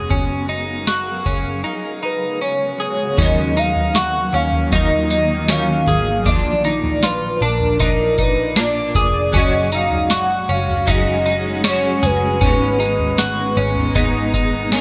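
This dream pop excerpt drifts at 78 BPM in F# major, with a dreamy, ethereal mood and a bright 1980s-style digital sheen under light reverb. From the start, a twelve-string electric guitar sits up front with clean, compressed arpeggios bathed in lush chorus and digital delay, over a cloudy, evolving granular pad holding blurred sustained chords and a dark, round, foam-muted picked bass. A booming analog drum machine with a deep kick, tonal snare, toms, tambourine and crash cymbal sits up front in the mix. At 2.0 seconds a velvety, mellow synth lead enters with the melody, colored by vibrato, chorus and delay. At 3.2 seconds a semi-hollow electric guitar joins with clean picked accompaniment shimmering through tremolo and ensemble chorus, as the harmony moves from D#madd9 through A# and F#sus2 to G#madd9.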